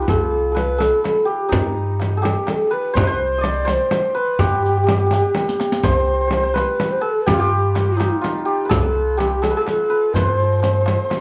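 Recorded live in one studio room with moderate ambience, this short section of a Persian modal ensemble piece in C avaz esfahan moves at 84 BPM in 6/8 with a longing, melancholic mood. A shimmering, up-front santur carries the melody while a breathy, hollow ney plays a second line, and a woody pizzicato upright bass holds the low end until 10.9 s. A hard-handed frame drum, a tight tombak set in the background and a riq with dark jingles supply the percussion, with a drum fill at 5.4 s.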